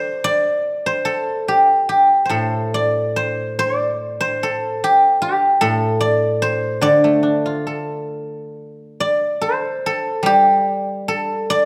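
Chinese traditional solo plucked-string music, contemplative and longing, in which a bright, silvery guzheng played with fingerpicks rings up front in a light reverb, moving freely in rubato around 68-78 BPM in 2/4 in the D yu mode across a range from A2 to D5, with a new section opening at 9.0 seconds in this fragment of a longer piece.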